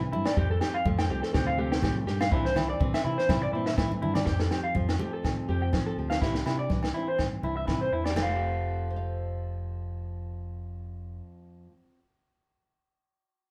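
Danceable and warm, this highlife guitar band excerpt moves at 123 BPM in 4/4 with a light sixteenth-note swing in F major, cycling between Fadd9 and Cadd9 as a band plays live together in one room. A twangy, slightly broken-up electric guitar through a small old amp sits up front with spring reverb, picking arpeggios over fingerpicked classical nylon-string accompaniment and a warm, fingered electric bass. A compact cocktail drum kit with a punchy kick, high-tuned snare and ride cymbal drives the groove, marking a drum fill at 3.8 seconds, while damped, thin-skinned congas and ringing agogo bells sit in the background until the percussion drops out around 8.3 seconds, leaving the guitars and bass to carry on.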